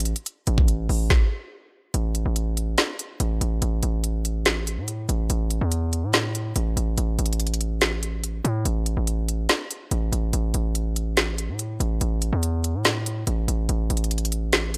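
A distorted, saturated 808-style bass with a heavy sine body and a noise layer sits up front beside a trap drum kit of knocking kick, woody snare and crisp hi-hats in this dark, melancholic half-time hip hop excerpt, both playing throughout with little reverb.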